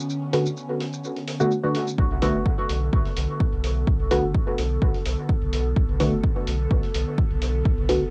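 A deep, mellow chord stab sits up front in this hypnotic, cavernous dub techno excerpt, its soft, evolving tone carried by chorus, phaser and dub echo while a filter sweep shapes it throughout. Beneath it, an airy, breathy pad holds sustained chords with a slow attack and long release, its detuned layers and noise texture softened by chorus. A muffled, pitched-down electronic shaker and hi-hat ticks along from the start with a compressed, sampler-style character. At 2.0 s a punchy analog kick drum arrives up front alongside a round, sine-like sub bass with transformer saturation, and the pad, stab and bass all pump against the beat. The groove moves at a straight 127 BPM in 4/4, resting on a single B minor seventh chord, and the home cassette recording lends a light reverb and a hazy, tape-worn patina.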